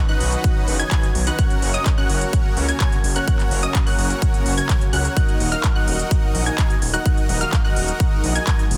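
A lush, detuned pad opens this short cut from a festival progressive house track in Eb minor at 127 BPM, its background chords shimmering with chorus and phaser as they move from B to Gb to Ebm, joined almost at once by a punchy unison pluck arpeggiating high up and a huge, thick supersaw riff, both trailed by tape echo. A detuned saw bass, big-room claps with crisp hats, and an up-front electronic kick that lands at 0.4 s fill out the powerful, emotional groove, while sidechain pumping breathes through the pad, pluck, supersaw and bass. The sound sits in a digital ambience with a dense, heavily limited modern master.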